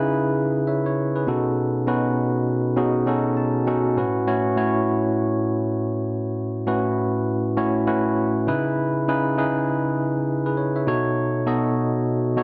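Over a swung sixteenth-note groove in 4/4, this punchy, confident R&B fragment from a longer piece features a clean tine electric piano alone, heard up front through its built-in speakers with light reverb, moving through C#m7, B7 and A69 chords with a brief fill at 3.1 seconds.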